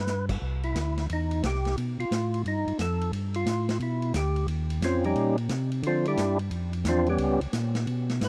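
Dry and close, this short cut from a longer piece has the sound of a 1970s studio with little reverb around the instruments. It is a swinging, soulful soul jazz organ trio in C major at 177 BPM in 4/4, with a 65% swing on the eighth notes. A fat, lightly overdriven percussive tonewheel organ carries the melody up front, its third-harmonic percussion, vibrato, slow rotary speaker and tape echo giving it a warm character. A second tonewheel organ plays the bass line from 0.0 seconds with a clean, clear tone, audible key click and its own slow rotary speaker. The vintage acoustic drum kit enters at 0.1 seconds, sitting lower in the mix with a tight kick, a medium-tuned snare, hi-hat, ride and crash, dark cymbals, and a saturated, gritty, warm sound with a rolled-off top. From 0.4 seconds an organ solo unfolds over a restless progression running from Cadd9 through Baug7, Em7, Eb13 and Dm11 to Db5.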